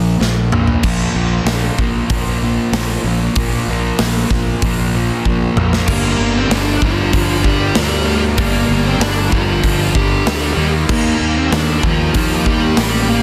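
A straight 96 BPM pulse in 4/4 from a punchy, up-front big-room rock kit with bright cymbals drives this cathartic, angsty quiet-loud alternative rock excerpt in G minor, where a compressed, double-tracked fuzz guitar riff and a growly fingered fuzz bass sound from the start, and at 5.9 seconds a dark, smooth overdriven lead guitar melody arrives alongside a tight distorted guitar riff in the background and a very quiet, piping tonewheel organ with key click and slow rotary speaker holding sustained chords, the whole mix dense, dry and heavily limited.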